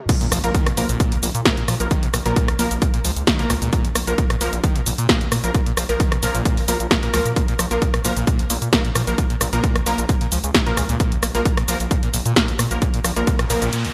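A straight 4/4 pulse at 132 BPM drives this dark, hypnotic peak-time techno in Bb minor, cut from a longer piece and already in a drop from the first moments. A heavy, layered electronic kick sits up front with overdrive, joined by a dry, punchy analog drum machine supplying crash, hi-hat, rim click, shaker and snare, also overdriven. Underneath, a nasal, aggressive synth bass built from square, sawtooth, sine and triangle waves with oscillator sync and wave-folding carries sidechain pumping. Meanwhile, a squelchy, distorted acid bass riff with a resonant filter sweep runs in the background, roughened by 12-bit sampler grit, chorus and delay. A thick, detuned rave stab in unison adds bright, evolving hits with a filter pluck, colored by chorus, reverb, tape character and delay. A very quiet impact opens the passage, and a noise sweep arrives at 13.4 seconds ahead of a break at 13.7 seconds, set within a 1980s-style digital production with light reverb.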